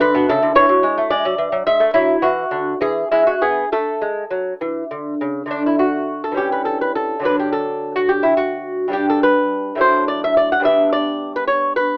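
A solo lute, bright and delicate with gut and doubled strings, fingerpicks a serene, dance-like baroque-style piece in a lilting 6/8 with gentle rubato, sitting up front in light reverb through a thin AM-radio tone, its harmony moving to D major from 5.5 seconds in this short cut from a longer work.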